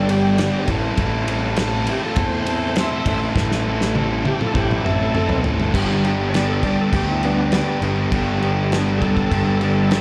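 A straight 4/4 classic rock groove swaggers along on a damped 70s drum kit with a fat snare, tight kick and dark cymbals, beneath a punchy, fuzz-laden picked bass and an up-front overdriven guitar riff, with a very quiet, sludgy distorted guitar alongside. A thick, gritty tonewheel organ with slow rotary speaker, chorus vibrato and tape echo carries the melody, joined until 5.4 seconds by a dark octave-fuzz lead guitar in the background, while a drum fill from 3.4 seconds leads into an organ solo at 5.7 seconds. The cut sounds like a live club gig heard through the venue's PA, with small-room ambience and club reverb.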